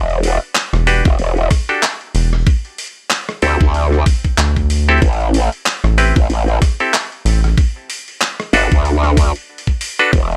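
A growling, wobbling bass with chorus and tube saturation drives this gritty, swaggering glitch hop fragment at 94 BPM with a swung 16th feel, joined by a rubbery, hollow square bass from 0.7 to 7.6 seconds, twangy, nasal clav stabs with sidechain pumping and analog delay, a knocking electronic kick up front, and an overdriven, pitched-down boom bap sampler-style kit of handclaps, hi-hat and rim click, all in a dry hardware recording that moves through a D7sus4 and a rootless Gmaj7.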